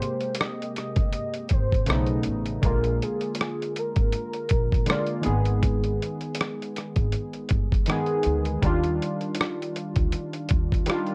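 A velvety sawtooth synth lead with chorus, vibrato and portamento sings a short melody over round, detuned analog keys and a muffled, pitched-down sampler-style drum kit of thumpy kick, hi-hat and rim click, with the lead dropping out at 5.2 seconds while the keys and drums carry on. This mellow, nostalgic lo-fi hip hop excerpt swings its sixteenths gently, and a woody pizzicato upright bass joins at 1.0 second beneath chords that drift from Abmaj9 through B9 and Bb7 to Abm and Ebmaj9. The keys sit up front with cassette-tape coloring and a low-pass filter sweep, the compressed drums are also forward in the mix, and a light reverb softens the sound.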